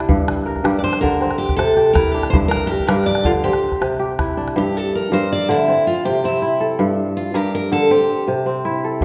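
A spacious recital-hall reverb places the listener further back in the room, framing this flowing, hypnotic West African string and xylophone music in a straight 12/8. A ringing, crisp kora spins fingerpicked arpeggios throughout while a small, dry calabash taps out percussion until 4.6 seconds, returning briefly at 9.0 seconds. A full-bodied, picked steel-string acoustic guitar enters at 0.8 seconds with the melody and carries a solo from 4.6 seconds, all over a steady alternation of Gm and C in this fragment cut from a longer piece.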